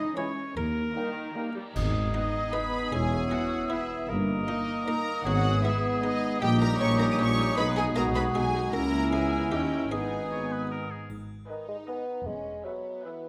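A moderate scoring-stage reverb surrounds this short, cut-down film cue. The mood is playful and mischievous in a lilting triple metre, with minor-key harmony that moves through diminished and flat-nine colour. A very quiet, muted buff-stop harpsichord with a dry, lute-like pluck carries the melody alongside a warm, intimate violin section bowed sul tasto with light vibrato. Second lines come from a bright oboe, an airy flute, a smooth clarinet and a clear, floating second violin section. Beneath them, a distant viola section and a mellow bassoon fill in the accompaniment, a mellow French horn section holds sustained chords, and the cello section, woody double basses and dark tuba anchor the bass. Clash cymbals, concert bass drum and triangle, close and dry, strike a band accent at 1.8 seconds and return at 11.1 seconds.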